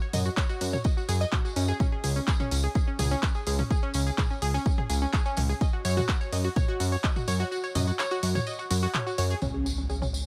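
Dramatic and melancholic, this melodic techno excerpt at 126 BPM in a straight 4/4 pairs bright, detuned analog pluck arpeggios, carrying chorus, delay and sidechain pumping, with a fat, wave-folded sawtooth bass and a tape-warm analog drum machine of handclaps, hi-hat and toms, all set in a dry room with a jingly vintage tambourine and an overdriven, up-front electronic kick that drops out at 7.5 s before a mellow, fat analog lead on C#4 and a background electronic impact arrive together at 9.4 s, as the harmony moves from F#5 through C#5 and back to F#5 before landing on C#m.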